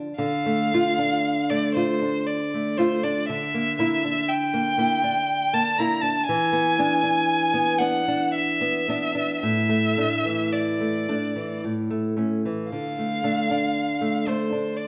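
Bathed in a lingering recital-hall reverb, this yearning, melancholic romantic duo in a rubato three-four opens with a small, warm fingerpicked nylon-string guitar accompaniment at 0.0 seconds, joined at 0.2 seconds by a single bowed violin whose smooth, rich vibrato carries the upfront melody through a brief passage cut from a longer piece.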